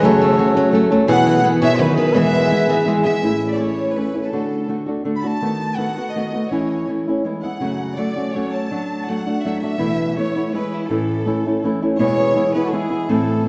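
A steady 3/4 pulse at 165 BPM carries this romantic, proud mariachi passage, cut from a longer piece, which opens in E major and shifts to A major at 3.2 s. An intense, vibrato-rich chamber violin section bows the melody throughout over up-front fingerpicked nylon-string guitar, while a silvery steel-string zither rings out arpeggios until 5.1 s. A mellow, distant trumpet adds a second line in the background at the start and returns at 12.0 s, all set in a dark, warm production with a wet concert-hall reverb.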